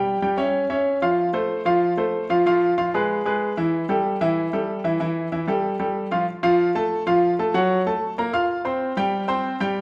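A clear, intimate baby grand piano plays alone through this fiery, passionate Latin excerpt, its audible action noise sitting up front in a natural sound as it ranges from E3 to F6 over chords like C#m, Fdim and a rootless Am7, all bathed in a wet large-studio reverb with a live-in-the-room feel.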